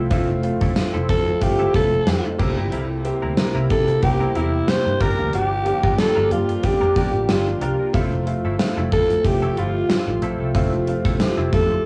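A clear concert grand piano, a mellow detuned analog pad with chorus, a twangy clean electric guitar riff colored by analog chorus and tape echo, and a round, foam-muted fingered bass open this nostalgic, glossy 1980s-style pop passage in F major at 92 BPM, with a gently swung 16th feel over Fmaj7, C7 and Gm7. A punchy gated drum kit with bright cymbals and tambourine enters at 0.1 seconds, and at 1.1 seconds a raspy, gritty alto saxophone takes the up-front melody with vibrato and tape echo. The cassette-tape haze on most parts and the small-room ambience give this brief cut from a longer piece a homemade, vintage sheen.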